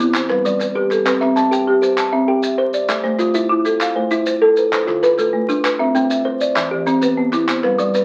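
A woody folk marimba with medium mallets, a hollow, ringing kalimba and grainy, mellow maracas open together, the marimba and kalimba in up-front, interlocking arpeggios, setting up a hypnotic southern African traditional cycle in 12/8 at 131 BPM in C major, joined by crisp group handclaps entering at 0.1 seconds, all bathed in a club reverb and the crackle of a very old 78 rpm record.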